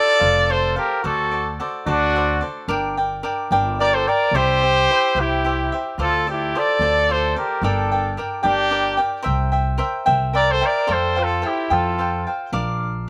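Rolling along in a straight 6/8 lilt, this proud, festive mariachi fragment sets a clear, vibrato-rich lead trumpet up front, with a second trumpet in light vibrato playing a lower line beneath it in a classical style. Both trumpets carry a slapback echo, as does the crisp, picked cavaquinho up front, while a woody, dark pizzicato upright bass enters at 0.2 seconds. The dry, open-air sound frames a progression that moves from F through D7 and Gm to C7 and an Fadd9 before the cut lands on Bb near 12.5 seconds.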